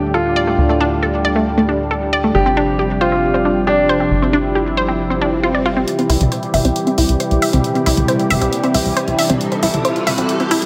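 A straight 4/4 pulse at 136 BPM drives this euphoric, soaring uplifting trance excerpt in C major, where a tight, driving sequencer bass and a detuned, warbling unison pluck arpeggio with digital delay run alongside an airy, evolving supersaw swell of sustained chords, while a polished grand piano with tape echo carries a second line over Dsus4 and G7sus4 until 5.8 seconds. A background swell from 5.2 seconds leads into a build-up at 5.9 seconds, where the harmony lands on C, a background riser sounds, punchy analog drum-machine hi-hat and toms enter, and a filter sweep moves across the arpeggio, all set in a lush hall reverb.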